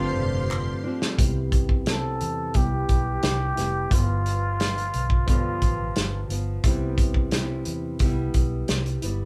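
A straight, laid-back 4/4 groove carries this dreamy indie bedroom-pop fragment, where a raspy, growling trumpet with light vibrato sings the melody until 6.3 s over fingerpicked nylon-string guitar with a warbly drift and a dark, foam-muted electric bass, while mellow electric-piano-like synth keys and shimmering string-machine violins glow only briefly at the start, a crisp group handclap pops at 0.5 s, and a loose, up-front indie drum kit enters at 1.0 s in a small, live-sounding room.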